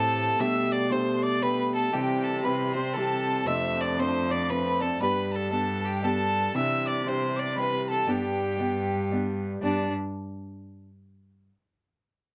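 A clear, up-front fiddle carries the melody in this cheerful, bright Celtic waltz, its bowing airy and earthy with a light vibrato. Set in G mixolydian at 117 BPM in 3/4 with a swung eighth-note feel, the tune moves through chords such as Gadd9/B, C, F6 and Cadd9 before settling back on G. A bright wooden whistle sits in the background on a second line above the fiddle, pure in tone with a crisp, chiffy attack and its own vibrato. A fingerpicked archtop guitar fills in the accompaniment with a warm acoustic sound and a touch of finger squeak, while a rich, nasal cello holds down the bass with a light vibrato. All four parts play throughout, heard in a small room with moderate reverb, and the passage, cut from a longer piece, moves from its opening section into a new one at 9.6 seconds.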